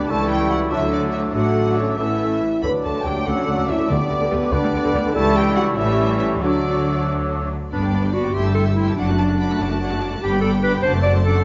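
In a 6/8 at 96 BPM with rubato, this cheerful, spirited classical-period orchestral fragment sets a smooth violin melody over rich cellos and double basses, with a bright solo clarinet, a mellow oboe, an airy flute ensemble and background violins weaving second lines, viola and mellow bassoon accompaniment, distant dark French horn chords, a brief touch of hard-mallet timpani at 3.9 seconds, and a move from D major to G major at 7.7 seconds, all in a moderate recital-hall reverb.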